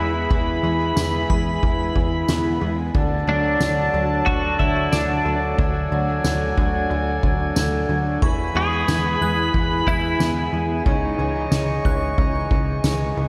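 Soaked in a lush hall reverb, this hazy, ethereal dream pop excerpt at 91 BPM layers a twangy, chorused twelve-string electric guitar melody that stops at 10.8 s over sustained chords from a woodwind section with light vibrato, shimmering fingerpicked twelve-string acoustic arpeggios, a punchy, plucky analog bass, a distant soft-mallet drum kit with kick, ride, snare and tambourine, and a crystalline synth bell in the background, moving through E, D and C#madd9.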